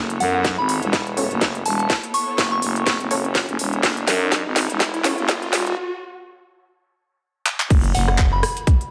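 Set in a light digital ambience, this gritty, aggressive bass house excerpt builds over a growling, thick FM bass that pumps against a tight, up-front electronic kick and a garage kit of cracking snare, crisp hats, handclaps, rim clicks and crash. A very quiet, lush bowed string section, a soft, pure synth bell with chorus and dub echo, and a bold, detuned orchestra-hit-like stab under a filter sweep fill out the build, while a background riser climbs from 1.6 seconds. After a break at 5.8 seconds, the drop lands at 7.7 seconds with an impact and a faint, compressed breakbeat kit, as the bell briefly returns.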